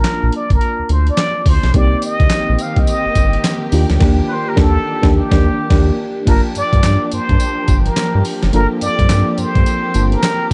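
Slick, punchy new jack swing R&B with a swung sixteenth feel, where a breathy, plunger-muted trumpet carries the melody over a dusty, gritty sampler-style drum kit with a thumpy kick and fat snare up front, a round, deep analog bass and a tremolo-laced FM electric piano, while smooth, bowed strings arrive with a soft attack at 1.7 seconds and the band hits an accent from 4.0 to 6.3 seconds inside a dark, dry mix.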